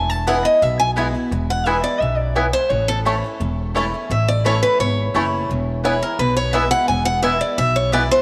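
A brilliant, boxy picked archtop guitar carries the melody up front in this joyful, lively bluegrass passage cut from a longer piece, backed by a fresh-stringed swing-style acoustic guitar, a dark, thumpy pizzicato upright bass on gut strings, and, from 0.3 s, twangy fingerpicked banjo arpeggios in the background alongside woody double-string mandolin stabs, over an E to A to E progression in a moderate plate reverb.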